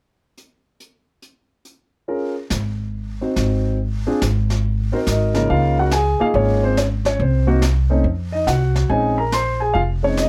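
Close, detailed microphones and little reverb give this swinging jazz piano trio an intimate, up-front sound in a cut from a longer piece. Brushed drums open alone at 0.4 seconds, with a medium-tuned snare and hi-hat heard in a studio room, sitting lower in the mix than the other two parts. The concert grand piano takes the melody from 2.1 seconds, its tone rich with deep bass and ranging from Db3 up to C6. The upright bass follows at 2.5 seconds, plucked on gut strings with a woody, thumpy character that sits prominently between F1 and F2. At 141 BPM in 4/4 with a firm swing on the eighth notes, the sophisticated harmony moves from Bbm7 through Ab7 and Cm before settling on Bbm11.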